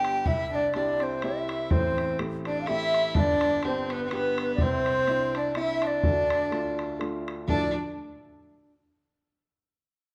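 Celtic folk waltz in 3/4 at 125 BPM with a swung lilt in D dorian, wild and spirited, where a pure, woody baroque flute with vibrato and a crisp attack carries the melody over a clear, earthy bowed fiddle on the second line, an intimate upright piano with audible action noise and long sustain, and a boomy, open bodhran, all heard in a moderate recital hall reverb as the chords move from C through Am7, G and Cadd9 to Dm in this passage cut from a longer piece.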